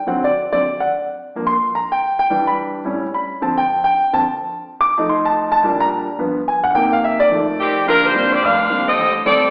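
Brassy and swinging, this short jazz excerpt opens with a smooth, vintage grand piano playing alone up front through a run of jazz chords until 7.6 seconds, when a clear saxophone section with vibrato takes the melody over the piano's final bars, all bathed in a wet recital hall reverb with an AM radio sound.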